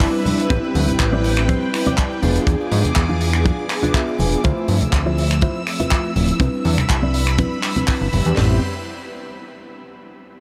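A fat, saturated analog bass sits up front, its detuned sawtooth and square tones plucked by a fast filter to anchor this sensual, groovy nu-disco cut at 122 BPM in A minor, with a light 16th-note swing. A tight funk drum kit with a high-tuned snare, tight kick, hi-hat and toms keeps the groove mid-forward in a small-room sound, while a second kit layer adds finger snaps, handclaps and hi-hat, and a bright tube shaker and congas ride in the background. Mellow synth brass plays round, chorused and phased accompaniment with sidechain pumping and a diffuse ambient delay, and a lush vintage string machine holds bright sustained chords with a slow attack and ensemble chorus. A clean, compressed, picked electric guitar plays a riff through analog chorus and a filter sweep, breaking into short fills at 3.7 and 7.6 seconds. The chords move from Cmaj7 through Am9, E7b9 and Dm9, come back to Cmaj7 at 6.4 seconds and return to Am9 at 8.4 seconds, and the whole mix is soaked in a huge, dreamy ambient reverb.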